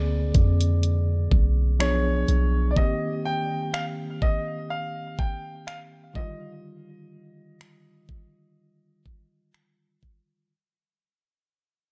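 Contemporary R&B with a tender, smooth mood and a swung sixteenth-note feel, this short cut from a longer piece moves unhurriedly through a Bb9, Bdim7, Cm7 and Ebmaj9 progression as it fades out from start to finish. A clear concert grand piano carries the melody between Db5 and G5, its natural tone touched by tape echo, while a tine electric piano, clean and heard through its built-in speakers, fills in the accompaniment beneath it. A deep, boomy 808-style bass with a sine-like, fast-attack, decaying tone sits up front but drops out at 2.7 seconds. From 0.3 seconds, a produced trap drum kit lays down finger snaps, bright hi-hats and a knocking kick with a tape-warm edge, placed prominently in the mix. Digital ambience gives the whole recording an echo-heavy sheen.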